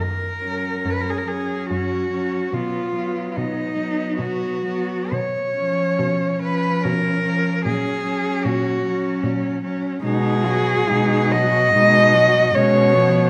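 A rich, focused cello carries the melody up front with vibrato over a close, even cello bass from the start, joined at 0.4 s by a smooth-topped second cello line and a warm, expressive accompanying cello with soft attacks and portamento, together forming a serene, tender classical passage for cello ensemble in F# major, cut from a longer piece, moving in a rubato 3/4 at 62-77 BPM within a reverberant recital hall.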